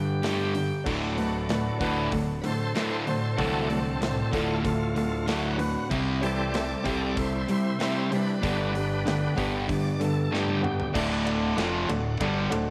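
A bright, shouting tonewheel organ opens this swaggering classic rock passage, cut from a longer piece. It takes a solo over sustained chords through a slow rotary speaker with light overdrive. Beneath it, two distorted electric guitars play a riff in the background, one bright and distorted, the other dark and sludgy, while a growly, punchy fingered bass adds a bright, direct sound. A big acoustic rock kit with a boomy kick and medium-tuned snare joins almost at once, and a clear, woody upright piano adds background accompaniment from 0.8 seconds. The harmony moves from G5 to D, C and G, and a drum fill at 10.3 seconds leads into a new section at 10.9 seconds, where a double-tracked overdriven guitar adds another riff as the chords return to D. A moderate plate reverb gives the confident band a roomy sheen.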